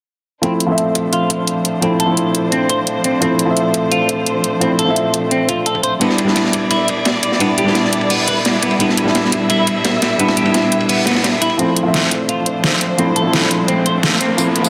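Soulful and rolling, this liquid drum and bass excerpt at 172 BPM in D dorian sets a muffled, thick-felt upright piano with 12-bit sampler grit and delay against lush, bowed dark strings, chorused clean electric guitar arpeggios, filter sweeps over the Dm7 and Em7 chords, and an up-front overdriven pop kit with a deep snare over a very quiet thumpy kick, while a saturated breakbeat kit with dark cymbals joins from 6.0 to 11.6 seconds before a build-up and a background riser arriving at 12.4 seconds, all in a dense, heavily limited master with hall reverb.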